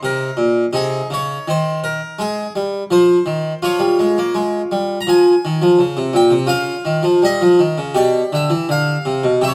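A solo harpsichord in the Flemish style, its two sets of strings giving a full, airy, plucked sound heard up front through close, detailed microphones, plays a flowing, solemn baroque-style suite movement in a rubato 4/4, opening on a lone Eb5 before moving through Ab/C, Db/F and Dbadd9 to end on G7/B at 7.9 seconds, all set in a moderate stone-room reverb in this brief passage cut from a longer piece.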